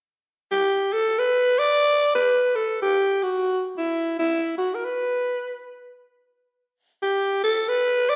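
A wet recital-hall reverb surrounds a close-miked, up-front alto saxophone in this smoky, late-night jazz fragment, cut from a longer piece. Swinging in 4/4 at 147 BPM, the sax plays alone from 0.5 to 8.2 seconds, its raspy, gritty growl edged with bright vibrato as it moves between E4 and D5.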